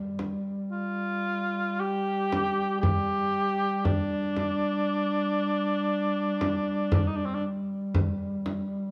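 In a moderate recital-hall reverb, this solemn, longing fragment of Caucasian folk lament drifts at a rubato 58 BPM in 4/4: a folk-style duduk drone on G3, rich with vibrato and scooped notes, opens at 0.0 seconds; a warm, up-front frame drum played with soft hands joins at 0.2 seconds; and from 0.7 seconds a mellow, smooth-topped cor anglais sings an up-front, classically styled melody between C4 and G4.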